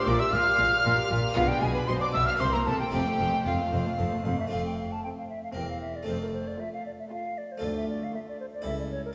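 A reverberant church or concert-hall acoustic surrounds this brilliant, festive baroque-style concerto movement in 3/4, cut from a longer piece built around solo episodes. An airy, hollow concert flute with a crisp attack sits up front on the melody, above a gut-string chamber ensemble in period style: a rich violin section also carries the melody, a dark violin section plays a second line, and a nasal viola section accompanies in the background, while cello and double bass sections provide the bowed bass. A round, dry, close-miked harpsichord fills out the accompaniment, and the harmony arrives on F at 2.9 seconds and again at 6.1 seconds before turning toward Dm and A7/C# near the close.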